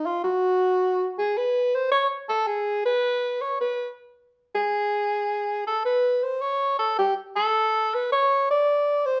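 A breathy, whispered alto saxophone plays alone for 9.2 seconds in this playful jazz fragment at 106 BPM with a swung feel, its soft-attack subtone and light vibrato sitting intimately up front while a wet studio reverb places the listener further back in the room.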